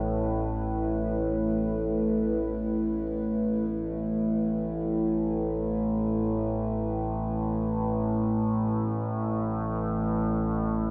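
An overtone-sweeping drone sits up front from 0.0 to 10.9 seconds, low in register, its sawtooth and sine tones roughened by ring modulation into a resonant, ever-shifting hum with a slow attack, long release, chorus and its own built-in reverb. Above it, a dark analog pad holds sustained chords across the same span, its detuned square, sawtooth and triangle waves thickened by a sub octave and shaded by a moving notch. This is a desolate, unsettling stretch of dark ambient drone in free time, cut from a longer piece, opening on an A5 chord. The music shifts into a new section at 3.7 seconds. Both parts sit in a cavernous cathedral reverb with a 6.8-second tail, and the cassette tape recording lends the whole a murky, worn patina.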